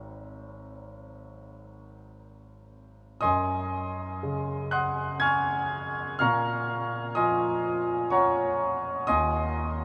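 A clear concert grand piano, played solo, carries this short impressionist classical fragment, its deep bass and open tone spanning from Ab1 to Ab6. The mood is dreamy and hazy, moving in a loose, rubato triple metre that lets phrases breathe. Opening on a lush Ab9 harmony, the music shifts into a new passage at 3.2 s, settling on Gbsus2 before darkening toward Bbm7. The piano sits up front, yet a huge, wet ambient reverb places it in a vast, echoing space, with long tails hanging in the air. The harmony dissolves into unaccompanied resonance near the end, as the piece is cut from a longer work at 9.8 s.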